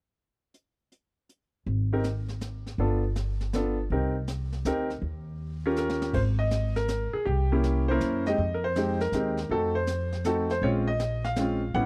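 Brushed drums open this warm, sophisticated jazz piano trio excerpt at 0.5 s, with dark cymbals, a high-tuned snare and a punchy kick setting up a swung waltz in 3/4 at 161 BPM in Ab major. A pizzicato upright bass enters at 1.7 s, woody and thumpy with steel strings, sitting up front, and a clear concert grand piano takes the melody moments later. The piano sounds smooth and vintage, with deep bass and a short sustain. The harmony moves from G7, Cm7 and Eb7 into richer colours such as C7b9, Fm9 and F7b9 before landing on Bbm7. A brief drum fill at 5.8 s leads into the next passage. The trio is captured in a small room as a dry, close 1970s-style studio recording, and the drums sit well behind the bass and piano.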